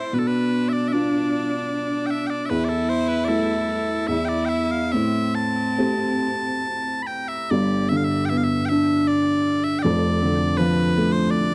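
Celtic folk slow air in 3/4, mournful and haunting, drifting in rubato at roughly 67-82 BPM: piercing bagpipes carry the melody up front with tape echo, a distant, earthy bowed cello with light vibrato adds a second line until 7.1 s, and a dark, woody upright piano accompanies throughout, all in a dry, close 1970s-style small-room recording cut from a longer piece.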